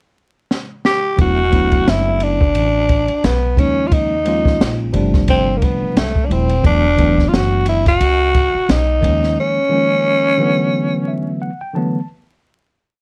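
A growling tenor saxophone sits up front in this smoky, nocturnal jazz-hop piece, playing a breathy, raspy solo built from short motif-based call phrases with subtone, vibrato and scooped notes. Beneath it, an open jazz drum kit with a boomy kick and a high-tuned snare lays down a boom-bap beat under a swung ride cymbal, entering with a short fill at 0.5 seconds before the band settles in. An upright bass walks with a woody, thumpy pizzicato tone, adding muted ghost notes, slides and chromatic approach notes. A worn, slightly out-of-tune tine electric piano, lightly overdriven through built-in speakers, pushes rootless suspended ninth chords and closes the piece with a short fill from 10.7 seconds. The whole track is wrapped in light reverb and a layer of vinyl crackle, lending it a dusty, late-night feel.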